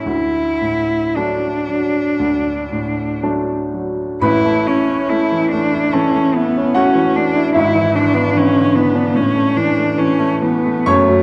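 A rich, bowed cello sings a smooth, vibrato-laden melody over a bright, brilliant baby grand piano accompaniment, both up front from the opening in this serene, tender romantic classical duo, a brief passage taken from a longer piece. In a free, rubato 4/4 at roughly 53-76 BPM, the music begins in D major and moves into A major at 4.2 s, passing through E7/G# before settling on A5 at 9.2 s. A recital hall reverb with a 1.5-second decay surrounds the pair, and the production leans dark and warm.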